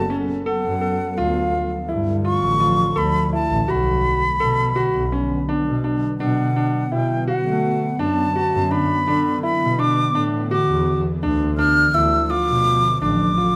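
A mellow, soft-attacked silver concert flute with expressive vibrato carries the melody up front in this urgent, hypnotic fragment of contemporary chamber music in 7/8 at 167 BPM in B minor, tuned to A4 = 445 Hz, over an ethereal pad of detuned sawtooth and triangle chords with ensemble chorus and its own reverb, an earthy, bowed double bass with a smooth top, and clear concert grand piano arpeggios with long sustain, recorded through close, detailed microphones with light reverb as the harmony moves from F#m through Dm to Bm before returning to Dm at 11.2 seconds.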